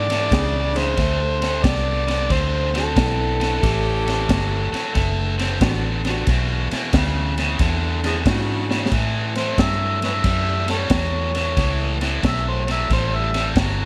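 Laid-back and swaggering, this electric blues shuffle at 91 BPM in A mixolydian is an excerpt built on a bright, overdriven guitar riff, a round, foam-muted fingered bass and a crunchy breakbeat kit with a punchy kick, high-tuned snare and dark ride cymbal, while close-miked saxophone section stabs sit beneath a gritty, amplified harmonica that scoops its notes and adds tongue slaps; after a drum fill at 8.6 seconds the saxes drop out and the harmonica returns at 9.4 seconds for a jazz-style solo, all under light reverb.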